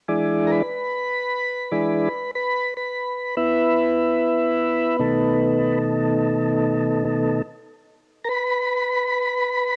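Blues in a swaggering, rollicking 12/8, this short cut from a longer piece features a smooth, clean tonewheel organ solo placed up front through a slow rotary speaker, moving from E7 to B7 at 5.0 seconds over light digital reverb with the intimate feel of a home cassette recording.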